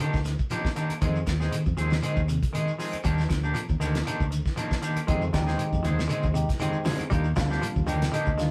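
A hypnotic, intense afrobeat groove at 118 BPM in F dorian opens with a cloth-damped, thuddy drum kit up front, a bright clean electric guitar playing tremolo-treated arpeggios in the background, and a twangy, slightly broken-up guitar firing picked stabs. A round fingered bass, grainy shekere and faint woody claves join at once as the chords move between Ebmaj7 and Fm7. At 5.1 seconds a barky, lightly overdriven tine electric piano enters with accompaniment and adds a fill from 7.6 seconds, while thin-skinned, low-tuned congas sit distant and very quiet, all within a rough rehearsal-room sound with moderate reverb, cut from a longer piece.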